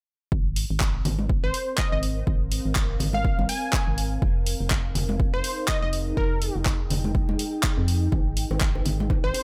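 A hollow, organ-like FM bass pumping against a punchy layered kick opens this late-night deep house excerpt at 0.3 s at a swung 123 BPM, soon joined by handclaps and hi-hat, bright soft-handed congas and bongos, an ethereal chorused pad with its own reverb and sidechain pumping from 1.3 s, and a catchy detuned sawtooth unison lead with dub echo from 1.4 s, all moving between Ab69 and Fm9 in a digital ambience.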